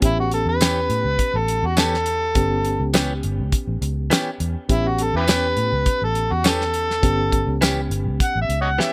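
Swaggering and gritty, this short cut from a longer piece is a straight-eighth soul blues in A mixolydian at 103 BPM in 4/4, sitting on an A9 chord throughout and tuned to A4 = 444 Hz. An overdriven, amplified harmonica carries the melody from 0.1 seconds, playing a jazz-style solo with light vibrato, tongue slaps and scooped notes, up front in the mix. Beneath it, a damped 70s drum kit gives a dry, fat snare and tight kick along with hi-hat and tambourine, while a vintage foam-muted fingered electric bass adds a dark, round low end. A reedy electric piano with light overdrive and fast tremolo fills in the accompaniment through its built-in speakers, and a clean, direct-recorded electric guitar enters at 0.6 seconds with compressed, picked stabs bathed in spring reverb. The overall sound is largely dry, with little or almost zero room reverb.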